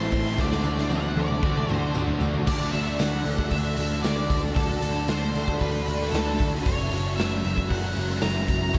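Shoegaze and dream pop rock at 115 BPM in D major, hazy and dreamy, with an octave-fuzz lead guitar carrying the melody over a thick fuzz riff, a brief overdriven guitar riff with reverse reverb that stops at 2.5 seconds, shimmering twelve-string acoustic arpeggios, an ethereal detuned pad, a round foam-muted bass, a jingly tambourine and an up-front, gritty garage drum kit that plays a fill from 0.4 to 2.5 seconds, all soaked in huge ambient reverb with lossy compression artefacts as the harmony moves from D to F#7.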